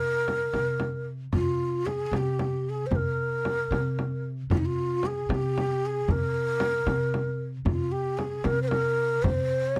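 A breathy, mellow end-blown ney opens this melancholic, soulful fragment of Arabic maqam music in C bayati, its tongued phrases carrying vibrato and a slightly unsteady, up-front voice between Eb4 and C5, while a woody pizzicato upright bass holds C3 beneath it. At 0.3 seconds a deep, large frame drum joins, played with soft hands, settling into a straight 6/8 at 76 BPM. The sound is dry and close, like a 1970s studio session with little reverb.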